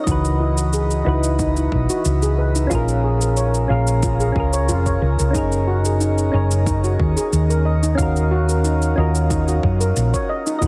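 A heavily compressed, radio-like sound with a moderate plate reverb frames this short sunset chillout excerpt, which feels warm and blissful in a straight 4/4. Soft electric-piano-like synth keys sit up front from the first moment, their round, mellow tone built from triangle and sine waves with a fast attack and decaying notes, colored by chorus, digital delay and shimmer reverb. A metallic steel pan struck with soft rubber sticks plays arpeggios alongside, its boxy small-room character passed through a low-pass filter that sweeps across the whole passage, plus delay and shimmer reverb. From 0.1 s, a dark, punchy hollow-body short-scale electric bass carries the low end with tube saturation, joined by a deep, overdriven electronic kick and a layered, overdriven cabasa. The harmony moves through C#m11, A#m7, F#69 and D#m7.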